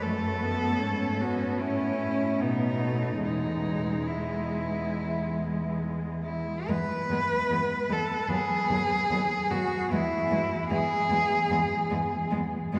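A clear, intense cello sings the melody up front with vibrato and a smooth top, leading a serene, tender classical piece for cello ensemble in E major, in 4/4 with a rubato feel at about 64-77 BPM. Behind it, a rich, focused cello carries a second line and a smooth, even cello plays the accompaniment, while a warm bass cello adds a soft attack, portamento and expressive bowing as the harmony moves from F#m through A and B7 to E, then from a rootless B/D# back to E. Cut from a longer piece, this passage shifts into a new section at 6.7 s, and a wet cathedral reverb with a 5.5-second decay fills the church-like hall.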